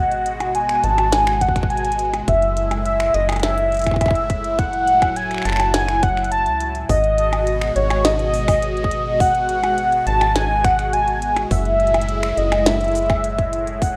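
IDM with a cerebral, melancholic mood, this short section cut from a longer piece moves at a steady, straight four-beat pulse over a slow alternation of minor seventh and minor ninth chords. Up front, a velvety synth lead carries the melody in a high register, its detuned sawtooth and wave-folded triangle tones smoothed by chorus, vibrato, digital delay and a cassette-tape patina. Beneath it, a phased analog pad holds sustained chords with a swirling, evolving character, its slow attack and long release shaped by a moving notch and chorus. A deep acid bass adds rubbery, resonant square-wave plucks that decay into dark tube-saturated tones. The glitchy drum kit scatters finger snaps, clicky hats, percussion blips and a tiny snare, and a tight electronic kick joins at 1.4 seconds, both drum parts tape-tinged and re-recorded in a large room. A lush hall reverb surrounds the rough home-demo mix.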